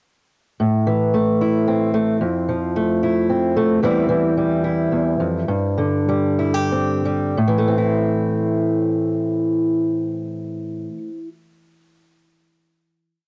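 A home cassette recording in a small, moderately ambient booth captures an intimate, reflective acoustic folk piece in 3/4. A single fingerpicked, ladder-braced acoustic guitar sits up front with a dark, woody tone and the dull bite of old strings, playing a rolling arpeggio through Am, Fmaj7, C/E and Gsus4. The pace slows from 3.8 seconds until the guitar settles onto a closing Am chord at 7.4 seconds, which rings out to the end.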